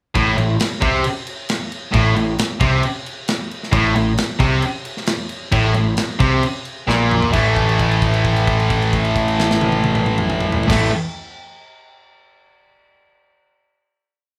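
Opening on a dark, aggressive heavy metal riff, a bright high-gain guitar sits up front over two sludgy overdriven guitars in the background, one of them double-tracked, while a growling overdriven bass drives eighth notes that double the single-note riff and a tight metal drum kit with a tight kick and crash cymbal pushes a big rock groove until a drum fill at 6.9 seconds leads into a final A5 chord held from 7.3 seconds in a lightly reverberant room.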